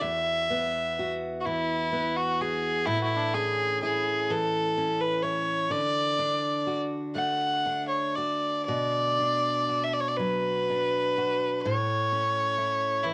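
Celtic slow air in E mixolydian, pastoral and nostalgic, drifting at 41 BPM in a rubato 6/8, where a rich, biting, up-front bowed fiddle with light vibrato carries the melody over a warm picked steel-string acoustic guitar with audible finger squeak, both bearing a cassette tape character in a modest studio reverb, throughout this 13.1-second home-recorded excerpt cut from a longer piece.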